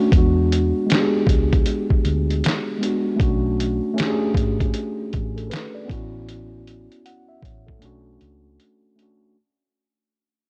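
A muffled, overdriven sampler-style drum kit sits up front with a thumpy kick, fat snare and hi-hat, coated in 12-bit grit and pitched down, driving this hazy, nostalgic lo-fi hip hop excerpt at 78 BPM with a swung 16th-note feel in B dorian. A clean, mellow tine electric piano, also up front, moves through E7, Bm7 and A6 to Bm9, while a dark, round, foam-muted electric bass stays low underneath. The dry, cassette-tinged sound has a dulled top end and fades throughout; a break arrives at 7.8 seconds, and the bass drops out at 8.6 seconds.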